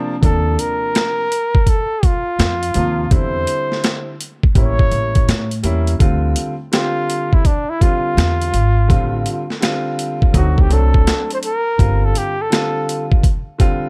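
Smoky and cool, this 83 BPM jazz-hop cut swings over a gritty, pitched-down boom bap drum kit up front with a thumpy kick and high-tuned snare, while a woody pizzicato upright bass anchors the low end, a baby grand piano lays down open, long-sustaining chords, and a breathy, whispered flugelhorn with soft attack and vibrato carries the melody intimately before taking a solo from 6.0 seconds, all set in a small room ambience.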